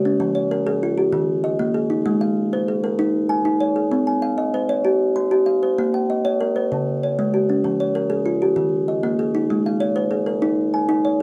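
A solo kalimba, thumb-plucked, woody and ringing with a dark, hollow-box tone and sitting up front in a small, moderately reverberant room, moves through a hypnotic, warm southern African traditional figure in 12/8 at 129 BPM, cycling through Fm, Eb, Ab, Cm, Bbm and Db5 before returning to Fm, Eb and Ab in this short excerpt cut from a longer piece.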